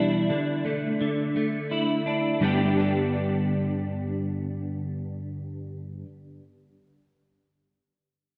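Cinematic and soaring, this brief rock fragment in 6/8 features a lone clean electric guitar, twangy and up front, picking arpeggios through ensemble chorus and tape echo from a Dsus2 to a G chord before it stops at 6.1 seconds, all afloat in a dreamy mix soaked in lush hall reverb.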